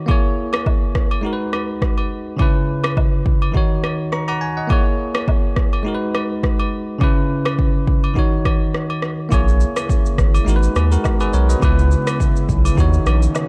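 A lightly swung afrobeats groove of deep, overdriven electronic kick, rim click and shaker, with close, dry agogo bells and woodblock, carries a mellow, hypnotic passage cut from a longer piece, where a bright, bell-like tine electric piano cycles through half-diminished and minor-seventh chords up front until a thick, saturated sub bass enters at 9.3 seconds and a lush, detuned unison pad with chorus drifts in behind it at 9.7 seconds, all in a dark digital ambience.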